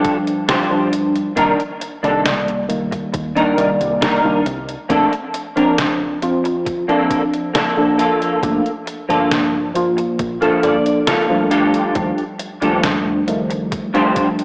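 A slow, straight 4/4 pulse at 68 BPM carries this nostalgic, melancholic vaporwave excerpt, where a worn, slightly out-of-tune tine electric piano with chorus, delay and 12-bit sampler grit sits up front beside a clean, picked electric guitar riff that adds a fill from 10.2 to 12.0 seconds, while a detuned 8-bit drum machine's hi-hat and snare and a thumpy electronic kick tick along underneath, a dark, round dub bass enters at 1.4 seconds in the background, and the chords drift from Ebmaj9#11 through Cm9, Bbmaj7 and Gm9 in a lush hall reverb with a cassette-tape, small-speaker sound.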